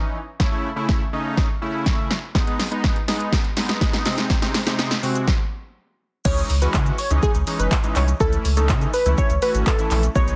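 Bittersweet yet confident, this dance-pop clip opens with a fat, nasal sawtooth polysynth pumping under chorus as a punchy analog drum machine with a soft-clipped snare builds through a fill to a stop at 5.3 seconds, then drops at 6.3 seconds into a round sine sub bass and a catchy detuned unison lead with tape echo, all in a dense, heavily limited, dry master.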